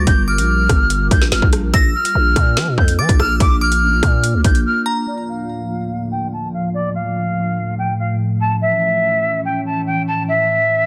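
Dark and ominous, this drill-style hip hop excerpt sits at 144 BPM with a half-time feel in D harmonic minor, led by an airy, expressive jazz flute with vibrato and breathy chiff over a glassy, ethereal FM pad that holds sustained chords throughout. Up front, an overdriven electronic drum kit with a hard-clipped kick, woody snare and metallic hats pairs with a growling, buzzy 808-style bass, while a crystalline synth bell with chorus, phaser and delay adds a second line. Drums and bass drop out at 4.6 seconds, and the bell carries on through a brief break from 4.7 seconds before ending at 5.1 seconds. From 5.1 seconds a filter sweep carries the flute and pad alone through the final section, in a dense, heavily limited mix with little reverb.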